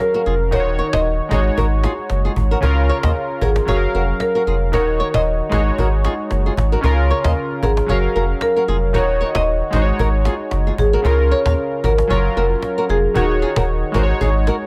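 A light reverb gives this breezy, sunny afrobeats excerpt an open, airy feel, moving at 114 BPM in 4/4 with a gentle 16th-note swing in Db major. A woody marimba played with medium mallets carries the melody on rosewood bars, its notes trailed by tape echo. Vintage analog keys sit up front with a detuned sawtooth character, a noise layer, a filter sweep and a warbling chorus, bright yet round as their chords decay. A fingerpicked acoustic flamenco guitar repeats a riff, also touched by tape echo, while a close cajon played with soft hands adds a faint snare rasp. Underneath, a deep, sine-based sub bass holds round, sustained notes up front, beneath a looping progression of Gbmaj7, Ebm7, Ab7sus4 and Db6.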